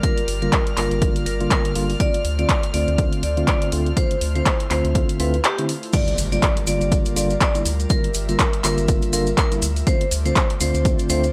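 A punchy, overdriven electronic kick sits up front in this moody, late-night deep house excerpt, joined by a layered drum kit of handclaps, hi-hat and crash cymbal carrying the same grit and small-room ambience, all with a swung sixteenth-note feel. Over this, a bright, ringing vibraphone played with hard mallets carries the melody, while a mellow tine electric piano plays clean stabs through tape echo and a round, dark analog bass enters just after the start. An airy, breathy pad holds sustained chords in the background with chorus, and the pad, bass and electric piano all pump against the sidechain over a harmony that moves between Gm7 and Dm7. A reedy, gut-string violin section adds a faint bowed texture with light vibrato, and the kick drops out briefly at 5.4 seconds. At 5.9 seconds the drop arrives: the violins fall away, grainy acoustic maracas join in the background, and a very quiet electronic impact sounds at 6.0 seconds. 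The whole mix has a dry, gritty hardware character.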